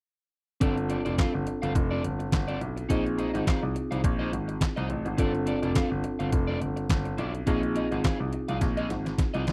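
A detuned 8-bit digital drum machine drives this slick, danceable early-eighties boogie funk at 105 BPM in 4/4, its sixteenths lightly swung, with a thumpy kick, a medium-tuned snare, handclaps and hi-hat that sound tape-warm, sampler-style and up front, as if re-recorded in a large room. Beneath it, a clear concert grand piano carries the bass line in its deep low register, present and worn with a short sustain. A mellow tine electric piano supplies clean, direct accompaniment, while an electric guitar at the edge of break-up picks a riff through analog chorus. The harmony alternates between G9sus4 and Bb9sus4, and a drum fill arrives at 8.6 seconds to close this section cut from a longer piece. The recording is dry and close, in a 1970s studio style with little reverb.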